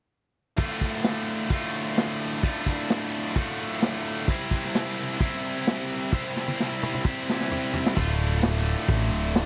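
A straight 4/4 groove anchors this swaggering, brooding slice of classic rock, cut from a longer piece. From 0.6 seconds, a tight, distorted electric guitar riff sits up front, bright and double-tracked, moving from a D minor chord to C while a vintage acoustic kit of kick, snare, hi-hat, toms and crash cymbal plays beneath it. The drums have a mid-forward, rolled-off character, with a punchy kick, a medium-tuned snare and dark cymbals, and a drum fill carries the music from 6.1 seconds into a new section. At 8.0 seconds a picked electric bass joins with a round, direct tone, low and up front, as the harmony returns to D minor. The sound is dry and close, in the manner of a 1970s studio recording, with little reverb to soften the attack.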